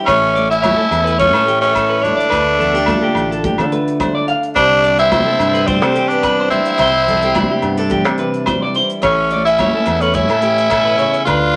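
A fingerpicked steel-string acoustic guitar and a clean, twangy electric guitar playing arpeggios open this danceable highlife guitar band excerpt, joined almost at once by the full band. Up front, a raspy, growling tenor saxophone carries the melody with light vibrato and a gritty edge, while a second tenor saxophone, punchy and jazz-styled with scooped notes, plays a supporting line further back. Underneath, a round, dark fingered electric bass holds the low end, and the acoustic guitar adds fresh-string brightness with audible finger squeak. A tight, dry funk drum kit of hi-hat, kick and rim click sits in the background alongside ringing, saturated agogo bells and thick-skinned, high-tuned congas played with soft hands, giving a lightly swung sixteenth-note feel. The harmony moves from A to Dm at 2.3 seconds and Cadd9 at 4.6 seconds before returning to A, all bathed in a wet studio reverb.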